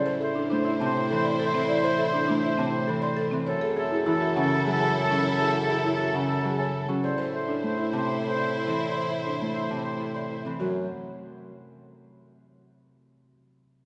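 Urgent yet meditative, this minimalist classical pattern music in 3/4 sets an airy, buzzing soft-mallet marimba melody in the background over dark, woody arpeggios from a second marimba with medium hard mallets, while an oboe with vibrato carries a smooth second line, a lush bowed string section holds sustained chords, a mellow bassoon with soft attack anchors the bass, and a ringing fingerpicked Celtic harp joins at 0.5 s, heard in a reverberant church acoustic.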